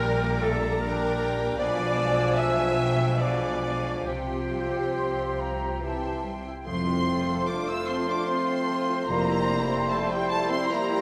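A wet recital-hall reverb wraps this tender, warm excerpt from a slow romantic orchestral movement in F major, played in 3/4 at 68-78 BPM with a rubato feel. A lush, expressive violin section carries the melody high above second lines from an airy flute section, a bright clarinet, a smooth-topped oboe and a focused symphonic violin section. Beneath them sit a dark bassoon, a close, even viola section, sustained chords from a present French horn section and very quiet ringing harp arpeggios, while intense cellos and double basses hold the bass until 9.8 seconds, some time after the shift to a new section at 6.7 seconds.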